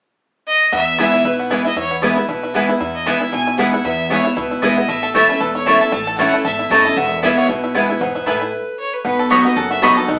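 A swung 231 BPM pulse in 4/4 drives this lively bluegrass excerpt in E major, tuned slightly low to A4 = 439 Hz. A single bowed fiddle with light vibrato opens the melody at 0.5 s, sounding clear and earthy yet somewhat distant. Almost at once a twangy, percussive banjo played with fingerpicks joins on melody. Beneath them, a picked steel-string acoustic guitar with fresh strings supplies up-front accompaniment, and a woody, dark pizzicato upright bass sits low in the mix. A bright, double-strung mandolin adds picked stabs. The harmony moves from E to A and back to E, and a brief stop at 8.5 s leads into a closing section on B at 9.0 s. The whole band plays live in one room with a wet studio reverb and an AM-radio character.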